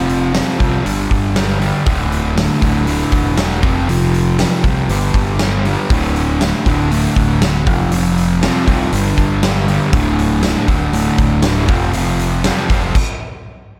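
A straight 4/4 pulse at 119 BPM drives this brooding, dark excerpt of quiet-loud alternative rock in D minor, cut from a longer piece. A double-tracked fuzz guitar carries the riff up front, its distorted, compressed tone thickened by a slapback echo as it cycles through F5, G5 and D5 power chords. Underneath, a growling fingered electric bass adds overdriven low end, while a huge arena drum kit brings a punchy kick, a medium-tuned snare, hi-hat and crash cymbal in a big, natural-sounding room. Light reverb and a small room ambience frame the band, which plays together until a sudden stop at 13.0 seconds leaves a brief silence before the cut.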